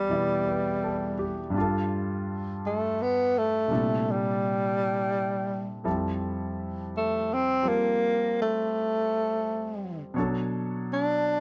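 Close, detailed and nearly dry, this short slice of a longer jazz ballad moves at a slow, swung 56 BPM in a wistful, smoky mood: a breathy, mellow tenor saxophone carries the melody up front in subtone with vibrato and scooped notes, while an intimate, warm concert grand piano, also up front, adds deep bass and audible action noise beneath chords that drift from Em11 to Bm9.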